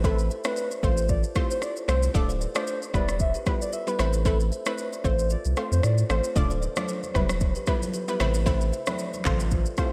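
A mellow, smooth afrobeats groove at 114 BPM in A minor opens with every core part at once. A hollow, woody synth lead with a clarinet-like tone carries the melody through chorus, phaser and delay, over a round, detuned analog pluck providing accompaniment. A bright, airy kalimba rings out a riff in the background, and a thick, saturated sub bass sits deep and up front. An electronic afro-pop kit with a deep kick, handclaps, rim click and shaker, wrapped in gated reverb, drives the 4/4 pulse with a light sixteenth-note swing. The harmony cycles through Amadd9, F/A, Dm and Em, tuned slightly below standard pitch. The kick briefly drops out at 5.3 s, the lead falls away at 6.2 s, and distant, softly struck congas join at 6.4 s for the closing stretch of this fragment of a longer piece, all set in a bright, 1980s-style digital production with moderate plate reverb.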